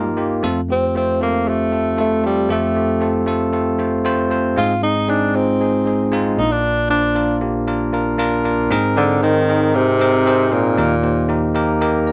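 Set in a straight 4/4 pulse, this romantic, nostalgic pop passage is cut from a longer piece. A breathy tenor saxophone carries the melody as a solo voice up front, its subtone playing marked by light vibrato, scooped notes, a smooth top and a punchy attack, with a slapback echo trailing each phrase. Beneath it, a bell-like tine electric piano provides bright, clean accompaniment that sits just as close and direct. The harmony moves through F, Ab and Bb before shifting at 8.7 seconds to a new section built on Abadd9 and Eb. The saxophone drops out at 11.6 seconds, leaving the electric piano to ring alone until 12.1 seconds. The sound is that of a dry, close 1970s-style studio recording, with only a short, moderate booth ambience around the players.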